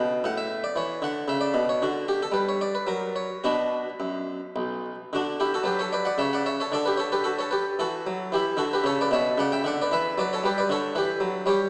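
Flowing and serene, this baroque-style suite movement for solo harpsichord moves in 3/4 at about 113 BPM with a rubato feel. Cut from a longer piece, it opens in B minor and settles into D major from 5.1 s, passing through chords of A, Bm, D and Em across its 11.7 seconds. The Italian-style harpsichord, strung with a single set of strings, sits up front with a plucked, round and warm tone, ranging from B1 up to G5. A wet church reverb with a long 2.7-second tail surrounds the instrument, though the overall sound has a small-speaker quality. The music falls into two statements of the same section, the second beginning at 5.1 s with the shift to the major key.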